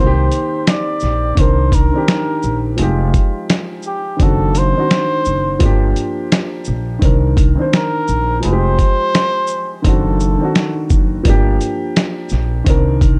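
A cup-muted trumpet carries the melody up front, its tone mellow, veiled and breathy with a light vibrato, heard close and shaded by a low-pass filter and analog delay until it drops out at 10.9 seconds. This hazy, reflective lo-fi hip hop passage, cut from a longer piece, moves with a relaxed swing on the sixteenth notes. An upright piano plays woody accompaniment colored by cassette tape and a low-pass filter, cycling through Cm9, Fm9, D7b9/F# and Gm7. A pizzicato upright bass on gut strings sits low, thumpy and dark. From 0.3 seconds a gritty, compressed soul sampler-style kit joins with kick, medium-tuned snare, hi-hat, shaker and finger snaps, re-recorded in a small room, and small room reverb completes a warm production.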